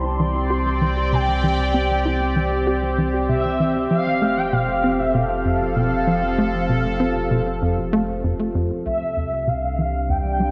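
A straight 4/4 pulse at 97 BPM drives this hypnotic, expansive stretch of ambient, sequencer-driven space music, cut from a longer piece and tuned to A4 = 438 Hz. A tight, punchy sequencer bass plays a dark, driving riff with a filter pluck and tape echo, and a filter sweep moves across this analog synth bass through the opening section and again after the change at 8.9 seconds. Beneath it, a deep, round sine sub bass holds the low end. An evolving, detuned pad with a slow filter swell and chorus sits up front, carrying sustained chords that move from C to F6 at 3.9 seconds and back to C at 8.9 seconds. Over the top, a smooth, mellow synth lead sings an expressive melody with vibrato, a moving notch, ensemble chorus and tape echo, all set in a lush hall reverb with a 2.9-second tail.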